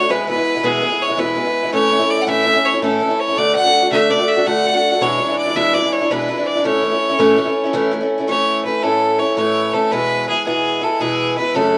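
A rollicking 9/8 celtic folk piece, cut from a longer piece, sets a bright, intense bowed fiddle with light vibrato and plate reverb up front alongside a boxy picked acoustic archtop guitar with fresh strings, also up front, both playing throughout the 11.8 seconds in a studio reverb as the chords move from E through A, D and E7 before a new section arrives at 8.3 seconds.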